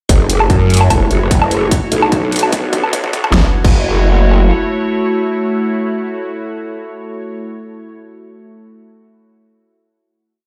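A growling, detuned bass, a distorted electronic kick and a dubstep kit with a huge snare, bright closed hats, a low woodblock and crash all hit together at 0.1 seconds. They launch a short, aggressive and heavy wobble dubstep piece in a half-time feel. The saturated bass sits up front, its formant-filtered, chorused phrases shifting wobble speed over the harmony. A filter sweep runs through the build, where a drum fill drives toward 3.3 seconds and the final chord. An evolving wavetable pad, full-bodied and warbling with a vintage, morphing character, enters with a slow attack and chorus. Its sidechain pumping carries the sustained chords until the piece closes at 7.3 seconds, all set in the boom of a large, bare room.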